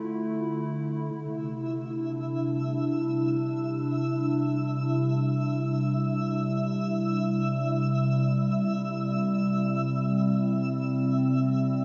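Weightless and peaceful, this free-time ambient excerpt in C major opens on a warbly, nostalgic tape-like pad holding sustained chords up front with chorus, moving from Dm to C at 1.1 seconds, while a faint, twinkling granular texture with an octave-up shimmer enters high above at 1.5 seconds, all soaked in a huge, dreamy reverb.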